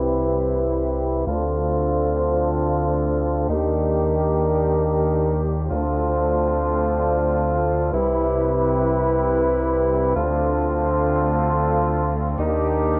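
Swaggering and funky, this glitch hop excerpt struts at 108 BPM in 4/4 with a swung sixteenth feel in D dorian, its harmony cycling through Cmaj7, Dm7 and Ebmaj7 under a filter sweep that runs across the full 13 seconds. Up front, a mellow jazz-style horn section fires stabs touched with light vibrato and tape echo, while a gritty, nasal driven synth bass with a fast attack and tube saturation growls low. Behind them, a rich chamber string section holds earthy bowed chords roughened by vintage 12-bit sampler grit, and a very quiet, airy acoustic hi-hat ticks along, all set in a small room with light reverb and the muffled, low-passed character of a home cassette recording.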